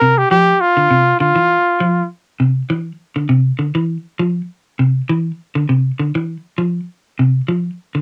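Driving and defiant, this afrobeat fragment from a longer piece opens with a clear, up-front trumpet singing a short pop-style solo line with vibrato and a smooth top, which lasts only until 2.1 seconds. From the start, a clean, picked electric guitar with a warm cassette-tape tone carries arpeggios over a Cadd11 chord through to 8.0 seconds, sitting up front with a lightly swung sixteenth-note feel. The sound has the close, wet air of a small booth in a homemade cassette recording.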